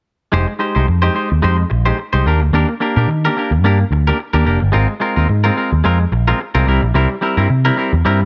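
A lightly swung 4/4 groove at 109 BPM drives this glamorous, danceable disco passage in F dorian, cut from a longer piece, with both parts playing from 0.3 to 8.3 seconds over Fm9, Ebmaj7, Ab69 and C7. Up front, a picked electric bass runs through an envelope filter with a warm, amped tone, while a bright, clean semi-hollow electric guitar adds compressed hollow-body accompaniment colored by a warbly pitch drift. Light reverb gives the pair a touch of space.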